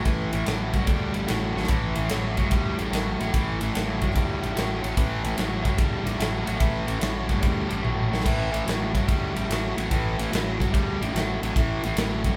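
A double-tracked fuzz guitar opens on an A5 riff with a growling, overdriven fingered bass beneath it, setting a driving, swaggering blues rock and southern rock groove at 146 BPM in 4/4 with a swung eighth-note feel. A big acoustic rock kit with bright cymbals, a medium-tuned snare and punchy kick joins at 0.1 seconds, adding fills at 1.5 seconds and again from 7.8 to 8.3 seconds. The up-front, compressed guitar and the polished, airy drums sit together in a large studio room as a power trio playing live, and this short passage is cut from a longer piece.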